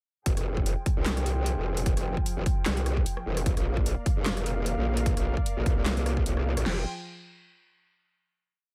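This short, aggressive heavy wobble dubstep piece crashes in at 0.3 seconds with everything at once: a half-time 150 BPM drop in F dorian, swung on the sixteenths, with a menacing edge. Up front, a growling, saturated bass wobbles through modulated phrases whose wobble speed keeps changing, its bright formant-filtered tone thickened by chorus and overdrive. Two layered electronic drum kits carry the half-time beat. One has a punchy kick, a huge snare and crash cymbal, and the other adds metallic hi-hats, rim clicks, handclaps and more snare, both with a tape-warm, produced sheen. Beneath them, a muted chamber string section plays con sordino, holding dark, veiled bowed chords with vibrato, filtered low and pumping under sidechain as the harmony moves from Fmadd9 to Bb. The drop gives way at 6.7 seconds to a final Fmadd9 chord that rings in digital ambience until 8.3 seconds.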